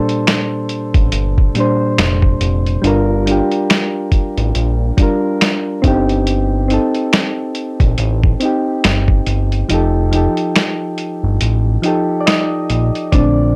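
A fat, thick analog bass with a sawtooth edge and transformer saturation anchors this mellow, nostalgic lo-fi hip hop excerpt, entering at 0.9 seconds and holding sustained low notes under a moving notch and filter sweep. Soft, round electric-piano-like synth keys carry the accompaniment from the very start, their gentle, warbling vintage tone softened by chorus, cassette tape character and a low-pass filter as they move through Bb69, Gm7, Eb6/G and F9. A sampler-style drum kit of finger snaps, hi-hat, a thumpy kick and a medium-tuned snare sits up front, compressed and muffled, as if re-recorded in a small room. The groove moves at a relaxed 70 BPM in 4/4 with a light swing on the sixteenths, and the kick drops out at 9.7 seconds as the harmony lands on F9. The overall sound is dry and gritty, with little reverb and a close, hardware-recorded feel.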